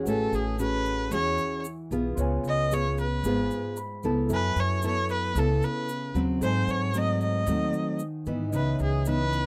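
A straight 4/4 bossa nova pulse at 113 BPM carries this intimate, smooth passage in C# minor, tuned slightly low to A4 = 437 Hz, with a grainy, bright tube shaker sitting close and dry in the background and a woody pizzicato upright bass underneath. Up front, a fingerpicked nylon-string guitar and a clear bowed erhu, played with light vibrato and smooth portamento, move over chords from Amaj13 through F#m11 and G#7b9 to C#m9. A polished grand piano stays in the background and adds a brief fill from 3.5 to 4.3 seconds, all captured in a dry, close 1970s-style studio sound with light reverb in this short section cut from a longer piece.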